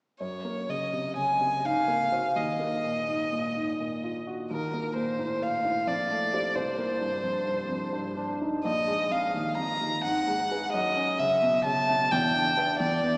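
A drenched church reverb with a 3.4-second tail places the listener further back in the room, and the whole recording has a small-speaker sound. In this luminous, dreamy excerpt of an impressionist classical duo in Gb lydian, moving in a rubato 3/4 around 86 BPM, a warm, expressive violin carries the melody from Bb4 to Bb5 with soft attacks, vibrato and portamento, sitting up front above the grand piano. The piano's clear, intimate accompaniment, with short sustain and audible action noise, moves through colourful harmonies such as Ab9, Fadd9, C7sus2 and Abm7 before settling on Em7 near 12.1 seconds.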